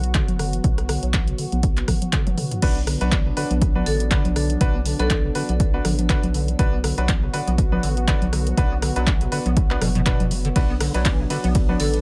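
Swung at 121 BPM in 4/4, this gritty, hypnotic acid house excerpt in B minor sets an overdriven electronic kick and a punchy, overdriven analog drum machine of congas, handclaps, hi-hat, rim click, toms, ride and crash alongside a round, nasal analog bass, a smooth, detuned pad holding sustained chords with subtle chorus, and a rubbery, resonant acid riff with a filter sweep, tube saturation and delay sitting in the background, with sidechain pumping on the pad and both basses; a drum fill at 2.3 seconds launches the drop at 2.6 seconds, where a brilliant, worn baby grand piano adds intimate, short-sustained stabs with audible action noise, and at 3.9 seconds a metallic, airy vibraphone struck with hard mallets rings out a brief delayed line.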